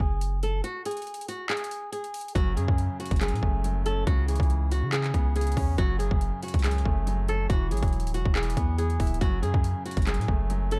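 Eerie and hard-hitting, this half-time trap cut at 140 BPM in F# minor sets a fingerpicked flamenco guitar melody, with audible finger squeak, over a deep, sine-like 808 bass with a fast attack and long decay. An overdriven electronic trap kit of hard-clipped kicks, metallic hi-hats and handclaps sits up front, while a break runs from 0.6 to 2.4 seconds. At 2.4 seconds a clear, smooth grand piano with a vintage tinge enters, moving through F#m, C#m7 and Eadd9 in a dark, reverberant production.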